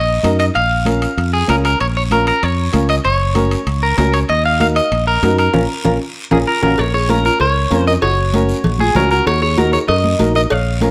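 A bright, clean picked electric guitar leads this driving, danceable cumbia excerpt in Bb minor at 193 BPM, its melody up front and touched with spring reverb over a direct fingered electric bass and a woody, slightly detuned vintage upright piano comping through Ebm, Bbm and Gb chords. Damped, high-tuned congas and ringing metal-shell timbales and cowbell sit close and dry in the background of a lightly reverberant room, joined by a raspy guiro with a small-room sound. A band accent arrives at 5.5 seconds, with a drum fill following at 6.2 seconds, and from 6.3 seconds a second, felt-muted upright piano adds a soft, boxy, mellow line with audible action noise.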